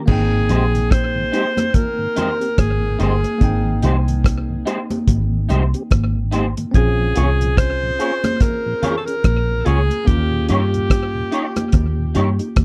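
A punchy alto saxophone with light vibrato and tape echo carries the melody from 0.1 to 12.1 seconds in this tender, smooth lovers rock reggae excerpt at 72 BPM in Ab major, with swung 16ths over Abmaj7, Bbm7 and Eb7. Up front sit a cloth-damped, thuddy drum kit (tight kick, dark cymbals, hi-hat, crash and rim click) and a round, foam-muted fingered electric bass, joined by a bell-like tine electric piano with slapback echo and chorused stabs from a slightly broken-up, lo-fi guitar through a small old amp from 0.5 seconds. A flute-like tonewheel organ with slow rotary speaker and ringing high-tuned congas sit in the background of this dry, close 1970s-style studio sound.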